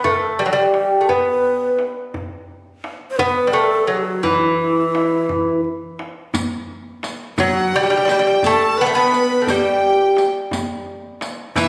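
Caught on a phone in a reverberant recital hall, this cut from a longer Persian modal piece in E avaz esfahan moves at a slow 57 BPM in 6/8, with a soulful, melancholic air. An up-front, fingerpicked lute with doubled nylon strings carries the delicate melody through a slapback echo, while a breathy, unsteady, end-blown ney with vibrato sings a second line and a soft-handed tombak keeps tight time underneath. A riq adds jingling sparkle from 6.3 seconds, and a bright, earthy chamber violin section joins the second line at 7.4 seconds.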